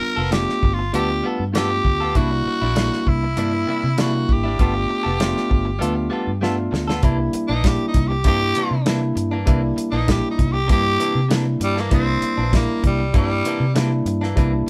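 Over a straight 4/4 groove at 98 BPM, this soulful, gritty soul blues fragment in C mixolydian pairs a raspy, growling tenor saxophone melody, up front with breathy vibrato and taking a solo from 7.0 s, with bell-like tine electric piano, clean compressed stabs from a direct-recorded electric guitar, a round, punchy foam-muted fingered bass and a dry, dark soul drum kit whose fill at 6.4 s leads into the second section, all moving between G9 and C9 in a moderate live-room ambience.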